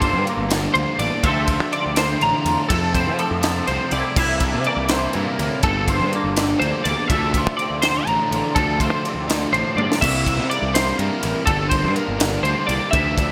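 Math rock and midwest emo in a straight 6/8 at 82 BPM, this intricate, wistful passage cut from a longer piece pairs a bright, compressed twelve-string electric guitar spinning chorused arpeggios with a double-tracked, overdriven guitar riff, a clean, fingered twangy guitar tucked in the background until 11.5 seconds, a dark, round fuzz bass, and a gritty, up-front fusion kit with a high-tuned snare and punchy kick. All of them move through jazzy ninth chords in a bright 1980s-style digital production with plate reverb, and a drum fill at 9.8 seconds leads into a new section at 10.0 seconds.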